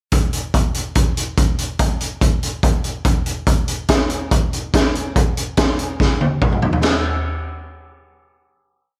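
A straight rock beat in 4/4 drives this short, carefree, jangly piece, built on an indie four groove from a raw garage drum kit. The kit uses kick, snare, hi-hat, toms and a china cymbal, with a boomy kick and a high-tuned snare sitting up front in a mid-forward, small-room sound. Its tone is saturated, gritty and warm, with a rolled-off top, and a light reverb adds a touch of space. The groove runs as an interlude from the opening, and a drum fill arrives at 6.0 seconds. The kit stops at 6.9 seconds, and a final hit closes the piece from 6.8 to 9.0 seconds.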